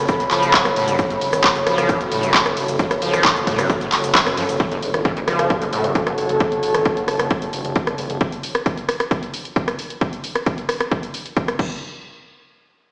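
This cut from a longer piece of driving peak-time techno sounds as if it were played on a big sound system in a bare stone room, caught through a small speaker, with a lush hall reverb hanging around it. The mood is hypnotic and intense, opening straight into a drop over a single minor chord, with a band accent just before the next section. An up-front, overdriven electronic kick anchors the groove alongside a layered techno kit of crash, ride, hi-hat, handclaps, rim click and shaker, its hats, cymbals and percussion pumping against the kick. Underneath, a gritty, saturated synth bass with a resonant, evolving edge pumps in the same way. A squelchy, screaming acid line with distortion, subtle chorus and tape echo cuts through until a filter sweep sets to work on it from 4.6 seconds, and it falls away at 6.1 seconds. A warbling, nostalgic tape-like pad with detuned, mellow sustain floats above until it and the bass stop at 8.2 seconds, leaving the drums to drive on alone.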